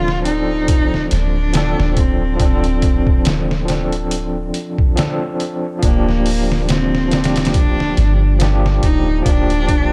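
Trip hop fragment, smoky and dark with a lightly swung feel, in which a distant, smooth bowed cello carries the melody with vibrato and vintage 12-bit sampler grit, an overdriven tine electric piano played through a combo amp adds tremolo and tape echo, a deep, round 808-style bass sits soft underneath, and an up-front, compressed, pitched-down sampler-style drum kit with thumpy kick, medium-tuned snare and hi-hat enters at 0.1 seconds, moving from Dm7 to Gm7/D at 5.8 seconds in a dry mix.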